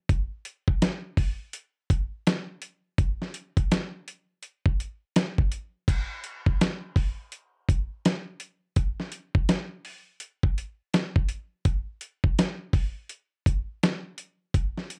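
A dusty, soul-flavoured sampler-style drum kit carries this smoky, cool hip hop excerpt, its thumpy kick, medium-tuned snare, hi-hat and crash cymbal sitting up front with a gritty, compressed, overdriven edge. The beat rolls at 83 BPM in 4/4 with a lazy 16th-note swing, playing from 0.1 to 15.0 seconds across two passes of the same section. Light reverb and a dark, warm production frame the groove.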